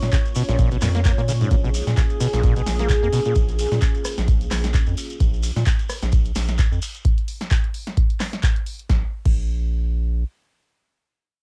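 A raw, gritty slice of acid house cut from a longer piece, recorded at home on cassette with little reverb, so the dry, saturated sound sits close and unpolished. At 130 BPM in 4/4 with a light swing on the sixteenths, it opens at full drop in Bb minor: a deep, up-front electronic kick drives a punchy analog drum machine of snare, handclaps, hi-hat, rim click and crash, re-recorded in a small room with a short room sound on its snare, clap and hats, while a distant shekere adds grainy, acoustic texture until 7.0 seconds. Underneath, a round, dark square-and-sine bass holds the low end with sidechain pumping, and a smooth, detuned sawtooth pad with slow attack and chorus breathes on sustained Bbm chords until 5.2 seconds. The squelchy, resonant overdriven acid bass riff carries the track's character, its saturated filter plucks snapping and decaying through subtle chorus and tape echo until 3.3 seconds. 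Briefly, from 2.8 seconds, a soft, breathy flute-like synth lead floats in the background on a single held Ab4. After the drums stop at 9.4 seconds, the round bass carries on alone until 10.2 seconds in the unaccompanied closing passage.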